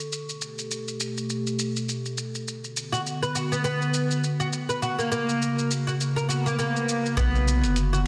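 Organic downtempo with a meditative, mystical mood, this short excerpt from a longer piece moves at an unhurried, lightly swung pace. A warbling, lo-fi pad with chorus and its own reverb sustains dark, nostalgic chords through Gadd9, Bm and F# before returning to Bm, its sidechain pumping giving the held sound a gentle pulse. A gritty, sampler-style shaker and hi-hat run throughout, with soft clipping on the snare, while a metallic bronze singing bowl rings close and dry in the background with slow beating. At 2.9 seconds a bright, woody, plectrum-plucked oud enters up front with arpeggios fed through tape echo, and a very quiet electronic swell appears at 6.3 seconds. At 7.2 seconds a round, deep, nasal analog bass arrives up front together with a thumpy, compressed kick in the background, all set in a lush hall reverb under a dense, heavily limited modern master.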